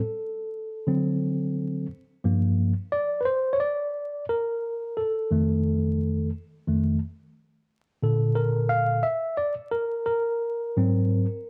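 Hip hop at 88 BPM in 4/4 with a swung sixteenth-note feel, this smoky, nocturnal excerpt features a lone tine electric piano playing solo from 0.0 to 11.5 seconds. Worn, slightly out of tune and lightly overdriven, it sits up front as if heard through built-in speakers, moving through D7, Gm7, F7 and Bbmaj7 before landing on G#9. Light reverb and vinyl crackle frame a hazy home-cassette sound.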